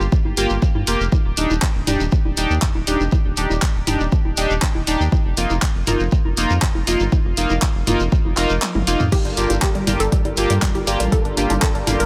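Glossy, retro polysynth stabs with tape echo open this driving, dreamy progressive house excerpt, riding a round, dark analog bass up front, both pumping to the sidechain, with a grainy shekere in the background. A deep electronic kick sits up front beside a tape-toned deep house kit of handclaps, hi-hat, toms and crash, while electronic congas and toms pump further back; the kick drops out for a drum fill at 8.6 seconds. At 9.1 seconds a thick, nasal unison pad and a punchy, wave-folded pluck playing echoing arpeggios join as the chords return to Gm7, all set in a digital ambience.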